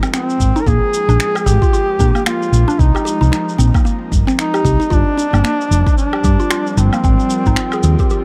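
A close-miked duduk with vibrato and scooped notes carries the folk-style melody in this mystical, swung organic downtempo excerpt, over a round, hollow-body fretless bass with sidechain pumping, a deep layered electronic kick, electronic finger snaps, woodblock and shaker, a woody FM mallet-like pluck playing arpeggios through delay and cassette-tape colour, and a warbling, nostalgic lo-fi pad holding chords in the background, set over Ab, Bb7, Cm7, Gm7 and Abmaj7 in a dark, warm production.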